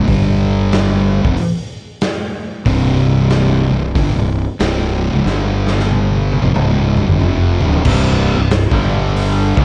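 A thick, double-tracked fuzz guitar leads this brooding, sludgy stoner and doom metal excerpt in a swung 4/4, churning through G5 and C5 power chords over a growly fingered bass and a punchy, gritty garage drum kit that plays a fill from 5.3 to 7.9 seconds, after which a brighter overdriven second guitar joins for the closing bars, all set in a small, dark room.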